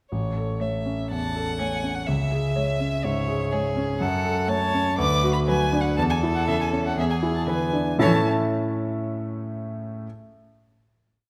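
Heard in a moderate scoring-stage reverb, this complete, lively and spirited classical-period movement for piano quartet in A major moves at a quick 122 BPM with uneven beats. An intimate, up-front concert grand with audible action noise and deep bass plays rocking broken chords from 0.1 s, while a warm violin with vibrato and portamento carries the expressive melody. A clear, close second violin adds an even counter-melody and sustained chords from 1.1 s, and a rich, focused cello sits in the background with pizzicato accompaniment and sustained chords, until the strings stop at 8.3 s and the piano rings on alone through the rest of the final chord.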